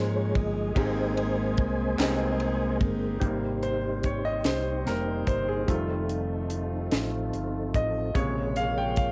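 Slow gospel in 6/8 at 49 BPM in Ab major, hopeful and uplifting, where a soft, flute-like tonewheel organ with key click and slow rotary speaker takes the opening solo over an intimate, clear baby grand piano with audible action noise, a dark, round fingered electric bass and a tight, dry funk drum kit with bright cymbals that enters at 0.4 seconds, a distant group handclap sounds briefly at 2.0 seconds, and from 3.2 seconds the piano takes the solo as a softly attacked French horn section adds background chords, all with light reverb and the character of a home cassette recording in this excerpt.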